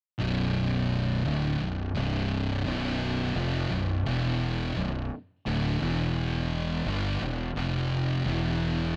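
A moderate large-studio reverb surrounds this brooding, heavy metal fragment at 86 BPM in B minor, where two thick, distorted fuzz guitars pick a low riff from 0.2 to 9.0 seconds, one of them up front, over a growly, overdriven fingered electric bass that sits equally forward, moving through Bm, C5, B5, E5 and F5.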